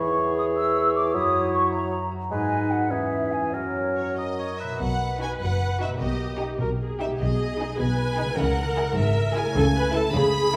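In a 6/8 at 101 dotted-quarter beats per minute with free rubato, this spirited, dramatic passage from a fast romantic orchestral movement opens with a bright solo clarinet, an airy flute ensemble, a vintage-toned oboe and a close-miked bassoon over a ringing, fingerpicked concert harp that sounds throughout. At 4.0 s a rich, smooth violin section takes the melody, and by 4.8 s the woodwinds give way to lush bowed violas with portamento, cellos and close double basses, while a softer, expressive violin section enters in the background at 5.2 s. The harmony moves through a minor key with seventh chords, and everything sits in the glow of a wet scoring-stage reverb in this excerpt cut from a longer piece.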